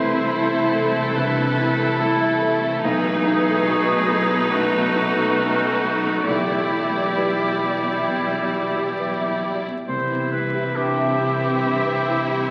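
Cinematic and rubato in 4/4, this short fragment of a longer piece feels uplifting and tender, moving through Am/C, B7, Em7/B and Cmaj7 across its 12.5 seconds. A lush violin section carries the melody with smooth, vibrato-rich bowing, while a second, more distant and focused violin line sits beneath it alongside a roomy solo oboe and a solo clarinet set back in the mix. A felt-muted upright piano adds soft, dark, short-sustained accompaniment in the background, joined by a very quiet, close viola section. A mellow French horn section holds loose, soft-attack chords, and the bass is anchored by an expressive cello section with portamento and a smooth double bass section, both kept in the background. The whole ensemble plays throughout in a wet scoring-stage reverb, heard through the crackle of a very old 78 rpm record.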